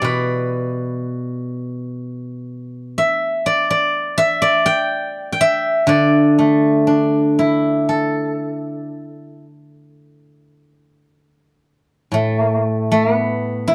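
Serene and pastoral, this brief cut from a longer Chinese traditional piece features a solo steel-string zither, played with fingerpicks, in D zhi mode at a rubato 53-64 BPM in 4/4, its silvery, ringing tone spanning A2 to G5 and sitting up front in a dry, close 1970s-style studio sound, with a new section arriving at 12.1 seconds.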